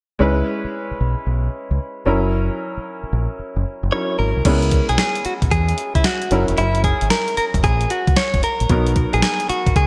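A clean, scooped electric guitar with subtle chorus carries the melody from 3.9 seconds in this bouncy, slick new jack swing excerpt at 113 BPM in C# dorian, swung on the sixteenths over C#m7 and F#7 before a turn to Bmaj7. A clear, worn concert grand piano and a dark, round fingered dub bass hold the groove from the start, and a crisp 8-bit drum machine with a thumpy kick and gritty 12-bit sampler texture joins at 4.5 seconds. Moderate plate reverb and bright 1980s-style digital production give the track its polish.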